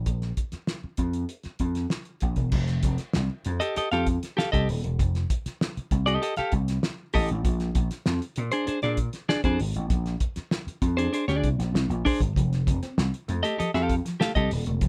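A vintage slap bass, punchy and amped, opens this playful, gritty funk excerpt at 98 BPM in F mixolydian, joined at once by a cloth-damped, thuddy drum kit with a fat snare, tight kick and dark cymbals, before a clean, compressed electric guitar with vibrato enters at 3.6 seconds over F9 and Bb9 chords, and a dark, fingered electric guitar riff slips in low at 12.4 seconds, all in a dry, rough home-demo mix.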